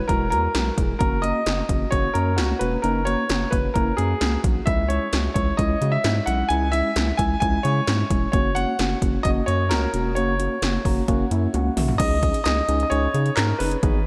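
Opening on an intimate concert grand piano melody with audible action noise and a diffuse ambient delay, over a mellow tine electric piano bathed in lush chorus and a round, deep analog bass, this melancholic, nocturnal synth-pop excerpt at 131 BPM in C# dorian features 80s electronic pad drums with a punchy kick, metallic hats and gated reverb on snare and toms, the mix soaked in a dreamy church reverb, as an electric piano fill and a drum fill lead into a brief new section at 12.0 seconds.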